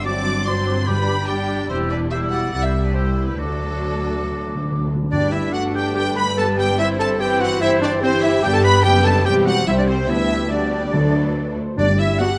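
A straight, quick 4/4 pulse at 144 BPM drives this lively, graceful classical-period movement in G major for symphony orchestra, cut from a longer piece, with a lush violin section carrying the focused melody over a darker, very quiet second violin line with portamento, a clear, lightly vibrato oboe, a solo clarinet, and an airy, mellow flute in the background. Violas supply smooth, even accompaniment, a distant, roomy French horn section holds sustained chords, and cellos and double basses anchor the bass, all within a moderate scoring-stage reverb. Timpani played with medium mallets sit close and dry in the background, entering at 0.9 seconds with a fill from 3.4 to 5.1 seconds before the second section begins.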